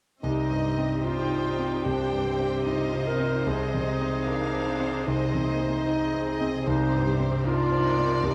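Rubato in 4/4, this bittersweet, sorrowful cinematic fragment pairs a dark, distant solo clarinet with a lush, vibrato-rich violin section on the second line over a polished, up-front grand piano, while a viola section glides with portamento in the background, a bright, ringing harp plays very quiet arpeggios, and a barely audible cello section stays on C, inside a moderate scoring-stage reverb as the harmony moves from Cm to Ab/C and back.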